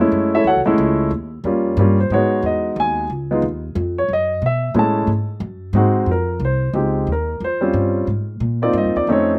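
A baby grand piano and a pizzicato upright bass begin together at 0.0 seconds in this cool, moody jazz excerpt, swinging in 3/4 at a brisk 181 BPM. The piano carries the melody between G3 and A5 with a warm, natural tone and short sustain, sitting up front in the mix. Beneath it, the acoustic bass with steel strings plays low lines from A1 to B2, woody and thumpy, also placed up front though a little softer than the piano. The opening passage moves through chords such as F#m9, D#7 and G#m7, then the harmony settles into F minor at 6.1 seconds with Fm9, Eb13 and Ab69 carrying the music to its cutoff at 9.4 seconds. The sound is dry and open, captured outdoors with little reverb, so both instruments come across close and immediate.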